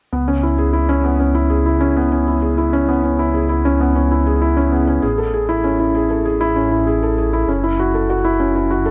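Set in a straight 4/4 at 98 BPM, this brief electronica excerpt in C# minor moves with a hypnotic, intimate calm. A felt-muted upright piano carries the riff from 0.1 to 8.9 s, its soft, mellow tone sitting up front with audible action noise and a tape echo trailing each phrase. Beneath it, a dark detuned saw bass rumbles low across the same span, its saturated, beating sawtooth tone blended with a sine body, with a fast attack and sustained notes. The harmony drifts from C#m7 to Amaj7 at 5.0 s and on to F#m7 at 7.5 s. A lush hall reverb with a 3.2-second tail surrounds the pair, lending the close, hushed playing a sense of depth.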